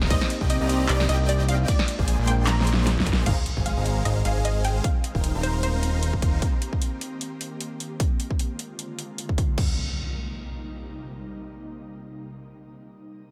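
The fat analog bass stands out most in this lush, bright future bass excerpt: thick, detuned sawtooth tones with a filter pluck sit up front and pump under sidechain compression in a swung, half-time 4/4 groove. The piece opens straight into a drop, where a huge, phased supersaw riff carries detuned chords, a punchy unison pluck with a wave-folded edge and tape echo carries the melody, and a bell-like tine electric piano chimes in the background until 3.3 seconds. A punchy, tape-toned electronic kick and a dubstep kit with a huge snare, metallic hats, handclaps and crash drive things, with a drum fill leading into an electronic impact. From 4.3 seconds an ethereal, airy pad with ensemble chorus and built-in reverb swells in on sustained chords, outlasting the bass, pluck and supersaws and carrying on alongside a final impact that enters near 9.6 seconds as the drums drop away. The chords move through Cm7, Bb7, Ab6 and Eb6, and the mix is dry and close overall, with a small room ambience on the drums.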